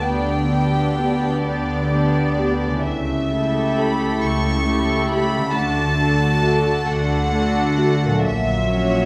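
A distant, floating violin section carries the serene, tender melody of this slow romantic orchestral movement in a rubato 6/8, with a close second violin line, soft sul tasto violas, dark double basses and cellos in the background, ringing harp arpeggios and tight, warm French horn chords from 1.0 to 7.9 seconds, all set in the moderate reverb of a scoring stage.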